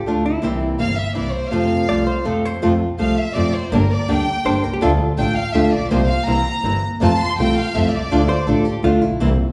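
Melancholic and passionate, this rubato tango excerpt in F major at 165 BPM in 3/4 sets a fingerpicked nylon-string guitar, with audible finger squeak, over a close, biting bowed double bass, while a soft-attack sul tasto violin section floats above and takes solo passages from 0.0 seconds, and a dark, compressed hollow-body electric guitar adds a second line that drops out at 5.1 seconds and returns at 8.3 seconds, all inside a reverberant hall with faint mains hum.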